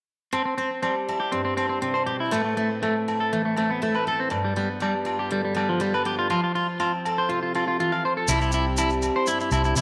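A straight 4/4 pulse at 121 BPM carries this carefree highlife guitar band passage in C major, where a bright, full-bodied picked dreadnought acoustic guitar accompanies twangy, slightly broken-up electric guitar arpeggios up front with tape echo and distant agogo bells ringing in a large room, until at 8.3 s a dark, round, foam-muted vintage fingered electric bass and close, grainy maracas join over chords moving from C through Amadd9, G7 and F back to C, the whole set in a moderate echo chamber reverb.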